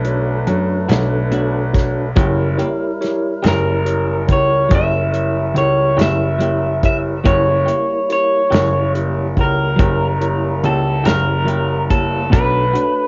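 A brooding, mournful slow blues in 12/8 opens on an up-front soul drum kit with a tight kick and rolled-off top, deep, clear grand piano bass with tube saturation, and a fat tonewheel organ holding sustained chords in the background through a slow rotary speaker with key click. A tine electric piano with medium tremolo and a clean, fingered electric guitar with its own tremolo fill out the accompaniment over Bm7 and a long stretch of F#7b9, before a slightly broken-up, picked lo-fi guitar through a small old amp takes the melody at 3.5 seconds. Light reverb and a dulled cassette top end give the home recording a hazy, intimate sound.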